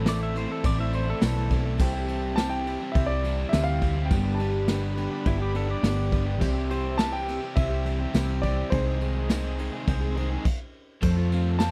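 Folk rock and heartland rock at 104 BPM in C major with a nostalgic, hopeful mood: a dark, mellow grand piano carries the melody over shimmering, octave-doubled picked twelve-string acoustic guitar, a scooped, double-tracked overdriven electric guitar riff, a round, up-front hollow-body bass, a soft brush drum kit with punchy kick, a jingly tambourine in the background, a very quiet woody upright piano with audible action noise and pure, floating bowed strings, while a clean pedal steel guitar with volume swells plays a second line until 7.0 s, captured in a dry, close 1970s-style studio recording with a brief stop at 10.4 s.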